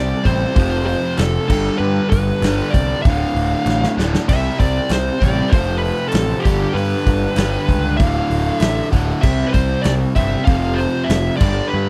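An up-front, bright, double-tracked overdriven rhythm guitar riff drives this gritty, brooding classic rock excerpt, joined by a dark fuzz lead guitar melody with slapback echo, a punchy picked bass with fuzz and overdrive, a big-room acoustic arena drum kit that enters at 0.3 s and plays a fill at 3.7 s, and hollow handclaps in the background from 1.2 s, set in a dry, close 1970s-style studio recording.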